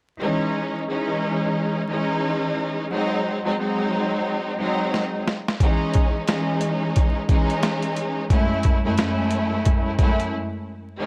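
A bright, lush, intense string section, bowed with vibrato, carries this moody, dark boom-bap hip-hop excerpt in C# harmonic minor at 89 BPM with a swung 16th feel, moving through C#madd9, G#7 and F#m7 from 0.2 seconds. A gritty, compressed, pitched-down sampler-style drum kit with a thumpy kick, medium-tuned snare and hi-hat enters with a fill at 4.9 seconds and drops out for a break at 10.3 seconds. Light reverb and a worn cassette character, with vinyl crackle and warbly pitch drift, give the whole an aged, dusty sheen.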